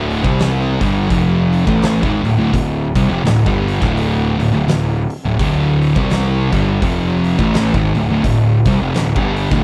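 Swung at 59% on the eighths in 4/4 at 84 BPM, this heavy, sludgy stoner and doom metal excerpt in D minor holds a single Dm chord as two thick fuzz guitars, one up front and the other dark, play a distorted riff spanning D2 to C4 over a bright, growly picked bass with overdrive and an oversized, low-tuned acoustic drum kit with a punchy kick, fat snare and hi-hat, whose big pumping room and gritty saturation stand out in an otherwise dry mix.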